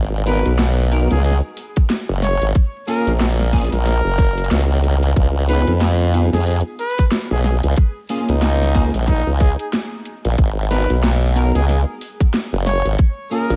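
A formant-swept sawtooth wobble bass sits up front with chorus and tube saturation at the very start of this playful, swaggering glitch hop excerpt, joined almost at once by a mellow, close-miked solo trumpet with light vibrato in a diffuse ambient delay, clean fingered electric guitar stabs carrying ensemble chorus and sidechain pumping, and an overdriven kit of cracking snare and bright hats, before a tight, overdriven electronic kick enters at 1.8 seconds, all riding a swung groove over a G#m7, F#maj7, C#7, A#m7 chord cycle and a bed of vinyl crackle in light digital ambience.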